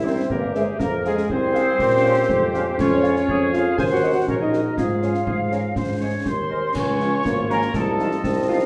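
A military-style march for wind band in 2/4, this spirited, proud passage is cut from a longer piece. A mellow trumpet section carries the melody over sustained chords from a dark, punchy trombone section, while a tight woodwind section with vibrato and a soft attack and an airy flute ensemble in the background add second lines. A French horn section fills in the accompaniment behind them, and a clear tuba with light vibrato sits up front on the bass line. Concert bass drum, snare drum and clash cymbals with dark cymbal tone play from 0.3 s with a close, dry sound. At 6.7 s a warm, roomy euphonium enters with its own second line as the harmony settles on Db before closing on F7/C. The band sits in a wet, large studio reverb heard from further back in the room, and the trumpets, woodwinds and horns lend a vintage, classical-style character.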